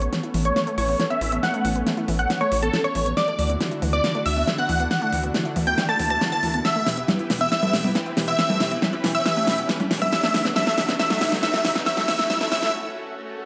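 A straight 4/4 pulse at 138 BPM drives this emotional, euphoric uplifting trance build-up in E dorian, with an up-front, layered dance kit of huge snare, crisp hats and congas playing a drum fill over a gritty, saturated synth bass while the chords move from Aadd9 through Dadd9 and Em to F#m. A lush, warbling pad with chorus and a punchy unison pluck arpeggio with delay sit in the background. At 0.5 seconds a huge, detuned supersaw lead carries the melody alongside a round analog pluck second line, both under filter sweeps, and a very quiet riser enters at 3.8 seconds before the break at 12.7 seconds leaves the pad and a swell ringing in a moderate hall reverb.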